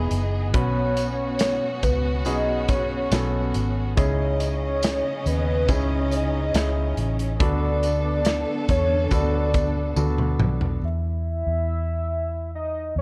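A tender, hopeful pop ballad at 70 BPM opens with a velvety synth lead carrying the melody over polished concert grand piano, bowed strings with vibrato, and a dark, round, foam-muted electric bass, while a punchy acoustic drum kit and a jingly tambourine in the background join at 0.1 seconds. The chords move from Emaj7 through Bsus2, C#madd9 and Bm7/D, and the recording is colored by small room ambience and worn, warbly cassette tape pitch drift. After a drum fill at 10.0 seconds, piano, strings and drums stop at 10.8, leaving the chorused, tremolo-laden lead and the bass over a rootless C#madd9/E.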